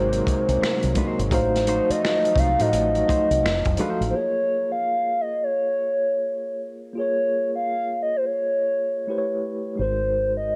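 R&B with a neo-soul lean, this short clip from a longer piece moves at an unhurried, swung pace in a minor key, introspective and smooth. A hollow, woody synth lead with a soft attack and chorus carries the melody up front, while a mellow tine electric piano with fast tremolo accompanies throughout, its tone coloured by cassette tape. For the opening 4.1 seconds, a shimmering, retro pulse-width pad holds sustained chords in the background, a deep, round dub bass sits punchy and close, a crunchy breakbeat kit of kick, snare, hi-hat and finger snaps adds gritty, saturated texture with a rolled-off top, and, entering just after the start, a clean, twangy electric guitar plays a second line. When the pad, drums and guitar drop out, the lead and electric piano carry on by themselves over Bbm7 and then A9 until the bass returns at 9.8 seconds. The whole clip has the intimate feel of a home cassette recording in a small room.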